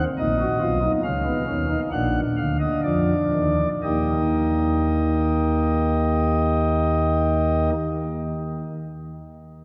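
In a straight 4/4 pulse between 60 and 73 BPM, this short fragment of a baroque-style three-part fugue slows down over its opening 3.8 seconds before a new section begins. The mood is serious and solemn, a classical piece for solo pipe organ heard on soft flute stops, placed up front, with a warm, romantic voicing that spans from Bb1 up to Gb5. The harmony moves from Ebm over Bb to Bb, then settles on Eb as the second section arrives at 3.8 seconds. A wet cathedral reverb with a 4.6-second decay surrounds the organ, giving the flutes a lingering, spacious halo. The instrument is tuned to A4 = 444 Hz, and the organ plays through the whole 7.7 seconds.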